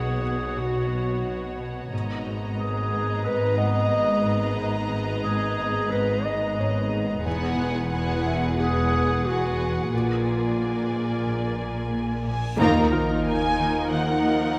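A mellow, distant clarinet sits up front with a roomy second line in this tense, eerie cinematic cue at 90 BPM in a straight 4/4, falling silent at 11.9 seconds. Behind it, a veiled con sordino violin section carries the melody with vibrato and a soft attack, while a second muted violin section and a muted viola section sit in the background. Dark, bowed cello and double bass sections hold the low end, and a very quiet concert harp rings out a fingerpicked riff. A detuned, warbling wavetable pad with chorus and its own reverb morphs and evolves, and a boxy felt-muted upright piano adds intimate texture with audible action noise. The harmony drifts through Bmadd9, Abmadd9, Eadd9 and Bb7 until a huge reverse cymbal and sub drop arrive at 12.4 seconds, leading to a band accent and an impact on Ebmadd9 at 12.6 seconds, where very quiet French horns and tight trombones enter with sustained chords, all set in a wet scoring stage reverb.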